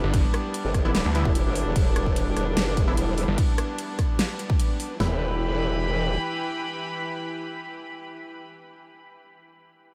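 A heavy, chaotic wobble dubstep drop in E minor at 148 BPM with a half-time feel opens with a chamber string section holding sustained, reedy, gut-toned chords under sidechain pumping and a low-pass filter, while a distorted, chorused growl bass and a snarling, detuned sawtooth bass with a moving notch roar up front, two layered electronic kits bring a punchy kick, huge snare, toms and metallic hats until about 5 seconds, and a faint, nasal orchestra-hit-like synth stab enters at 0.8 seconds and carries on with the strings to the end of this short cut at 8.4 seconds, all in a light digital ambience.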